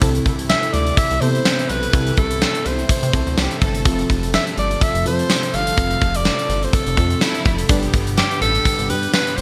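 A bright, glossy 1980s-style digital production with light small-room ambience frames this uplifting pop fragment, its swung sixteenths carried by a big rock drum kit whose gated-reverb kick, snare, hi-hat and tambourine sit up front. A chorused synth bass with a plucky pulse-and-sawtooth tone, a lush FM electric piano layered with a soft pad, and a shimmering pulse-width pad in the background move through Am, F and G. An edgy alto saxophone takes the lead from 0.5 s with light vibrato and scooped notes, while a distant bowed violin section with delay adds brief second-line phrases at 3.4 and 7.2 s.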